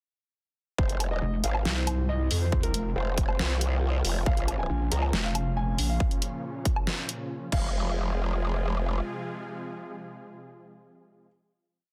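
Menacing and heavy, this short, complete piece of wobble dubstep moves in a half-time feel, opening straight into a drop at 0.8 s and closing on a final hit from 7.7 s. A punchy, overdriven electronic kick drum and a layered dubstep drum kit, with a deep snare, hi-hat, crash and low woodblock, sit up front with a small-room character. Two basses carry the weight: a growling, bright growl bass shaped by a formant filter, chorus and overdrive, and a pulsing pluck wobble bass, both playing modulated phrases whose wobble speed changes. Above them, huge, detuned supersaw chords hold a lush sustained pad, pumping from sidechain and shaded by a low-pass filter, while a dark, mellow concert grand piano repeats a riff melody through tape echo. The sound is dry and dense, with a heavily limited modern master.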